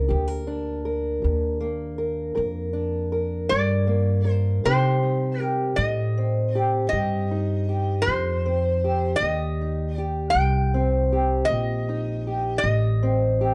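A metal-body resonator slide guitar, bright, nasal and metallic under its fingerpicks, enters up front at 3.5 seconds to carry the melody high above a brooding, soulful acoustic country blues in a slow 12/8 at 53 BPM. Beneath it, an old ladder-braced acoustic guitar with aged strings fingerpicks a dark, boxy accompaniment, while a pizzicato upright bass adds a growly, woody low end, both playing throughout as the harmony moves from G minor to C minor at 4.6 seconds. Light reverb and a dark, warm production give this short section cut from a longer piece an intimate, weathered feel.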